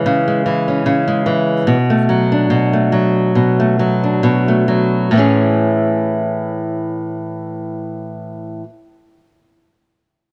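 Easy-going and carefree, this short pop excerpt features a lone fingerpicked nylon-string guitar, dark and small-sounding with fresh strings, placed up front in light reverb as it eases through C#m and Bm7 while slowing down over the first 5.1 seconds before settling onto Amaj7 with a gentle swing.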